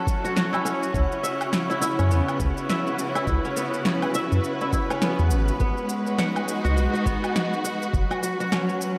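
A rich, bowed string section holds smooth, vibrato-laden chords with a sidechain pump as a crisp, ringing fingerpicked kora spins arpeggios through a diffuse ambient delay, over a round sine sub bass entering at 0.9 s, a soft overdriven kick, a punchy layered shaker, snare and woodblock kit, and a twinkling granular shimmer in the background, giving this hypnotic, meditative organic downtempo excerpt in C# minor at 103 BPM, with a swung 16th-note feel and F#m7, C#m7 and G#m7 chords, a dreamy, reverb-soaked hall sound.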